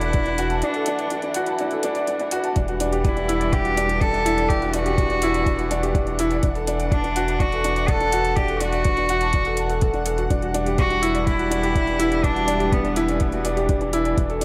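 Hypnotic and melancholic, this piano and strings electronica in E minor moves at 124 BPM in a straight 4/4, where a clear, up-front concert grand piano plays a short-sustain riff through delay, a rich, nasal cello sings a bowed melody with light vibrato and its own delay until 13.4 seconds, a veiled con sordino string section holds sustained chords that pump with sidechain, a round analog bass anchors the low end with the same pumping, and a soft electronic kick and metallic layered hi-hats drive the groove, all under light reverb, with a break from 0.6 to 2.6 seconds and harmony shifting between D/E and Em9.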